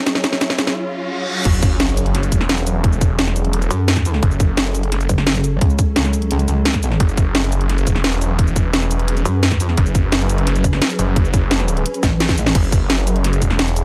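A snarling, distorted saw bass anchors this dark, mechanical slice of technical drum and bass, its growling, detuned sawtooth tone charging to the front when the drop hits at 1.5 seconds. Before that, a swarming drone holds tense, evolving chords with a slow attack and built-in reverb, its mellow grain pumping under a sidechain, while a background riser, reverse cymbal and sub drop build toward the impact. Once the drop lands, a tight, overdriven electronic kick joins a layered kit with a cracking snare, bright hats, shaker and crash, all pushed up front. From 3.7 seconds a metallic, FM-flavoured wobble bass with chorus cuts in and out in two stretches, adding aggressive, wobbling movement over the low end, and a drum fill arrives around 12.0 seconds. The harmony moves from a suspended chord to a minor added-ninth chord. The mix carries light digital ambience, and the piece is cut from a longer track.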